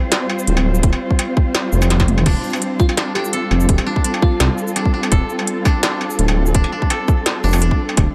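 Tense and cinematic, this short half-time drum and bass fragment opens on a dark bowed cello section holding sustained chords with sidechain pumping, joined by an up-front industrial drum kit with a clanging snare and smooth hats, a deep, rumbling detuned saw bass thickened by tube saturation, and a hard-clipped electronic kick, while after a drum fill at 2.0 seconds a dry, woody koto adds fingerpicked arpeggios through tape echo and a bell-like FM electric piano sparkles briefly in the background from 2.8 to 4.7 seconds.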